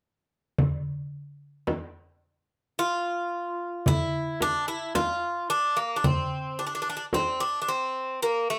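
The rhythm moves in a 10/8 metre at 110 eighth-note beats per minute with a straight feel, as darbuka and frame drum enter together at 0.6 s. This short fragment of a makam ensemble piece carries a melancholic, longing mood, tuned to A4 = 441 Hz. The small, high metal-shell darbuka sounds crisp in a live room, while the large frame drum is deep and close, played with soft hands. At 2.8 s an acoustic bouzouki takes the melody up front, its picked double strings bright and metallic with some octave-doubled courses, moving between A3 and F4 inside a plate reverb. The percussion stops at 7.4 s, leaving the bouzouki alone for the closing moments, all set in a light reverb.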